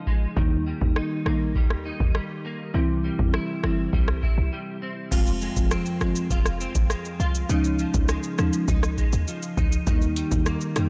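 Tough and sultry, this dancehall excerpt rides a booming analog drum machine, dry and up front, with a deep kick, metallic hi-hats, rim clicks, shaker and crash cymbal, under a punchy, tight 808-style bass with a fast attack. A dark, clean electric guitar picks compressed arpeggios through ensemble chorus and digital delay, while a woody marimba with soft mallets adds round, mellow accompaniment, all set in a digital ambience. The harmony moves from Eb to C, and after a brief break from 4.5 to 5.1 seconds it shifts into Fm and Dbadd9 before returning to Eb.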